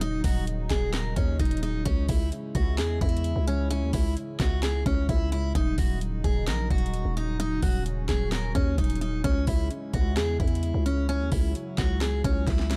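Eerie and menacing, this half-time trap hip hop excerpt at 130 BPM pairs a picked steel-string acoustic guitar melody, with finger squeak and a digital delay, against a deep, detuned analog pad with chorus sitting in the background, a growling, buzzy 808-style bass and an up-front trap kit of knocking kick, sharp snare, metallic hi-hats and handclaps, all moving between Ebm7 and Dbm in a dark, digitally ambient mix before a drum fill at 12.5 seconds.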